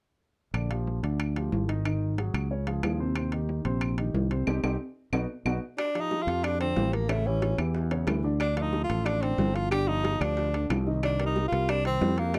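A breathy, whispered tenor saxophone takes the solo at 5.8 seconds, with scooped notes and vibrato sitting up front in this danceable, sophisticated Afro-Cuban jazz passage cut from a longer piece. Underneath, a growly, punchy fretless electric bass and a natural grand piano carry the harmony from the start, while ringing metal-shell timbales and woody claves keep time, joined by tight, high-tuned bongos in the background once the saxophone enters. A drum fill and band accent at 4.5 seconds lead into the second section, and the close, detailed sound carries little reverb.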